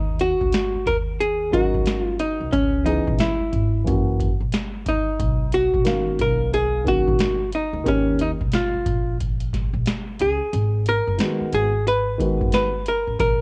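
Jazz-hop with a cool, smoky swing, built on a clean, hollow-body archtop guitar melody up front, a woody, thumpy pizzicato upright bass, a booming analog drum machine with metallic hats and a deep kick that drops out from 10.5 to 11.9 seconds, and a dark, mellow grand piano entering at 1.5 seconds, with the guitar, drums and piano carrying a cassette-tape grain in a dry home-recorded sound.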